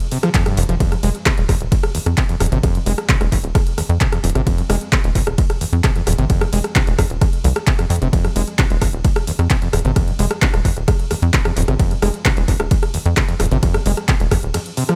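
The rhythm rests on a straight pulse from an overdriven electronic kick drum, punchy and up front, with a punchy analog drum machine adding handclaps, hi-hat, ride cymbal and rim click through overdrive and analog delay. This is driving, relentless peak-time techno with an industrial edge, cut from a longer piece. A tight sequencer bass enters at 0.6 seconds, its sawtooth and square-wave tone shaped by a fast-attack filter pluck and a moving notch, pumping from the sidechain. Above it, an overdriven acid bass riff squelches with a resonant, distorted bite, colored by subtle chorus, tape echo and the same sidechain pumping. The mix is dry in terms of room sound yet heavy with echo, and it drops into a short break at 14.5 seconds.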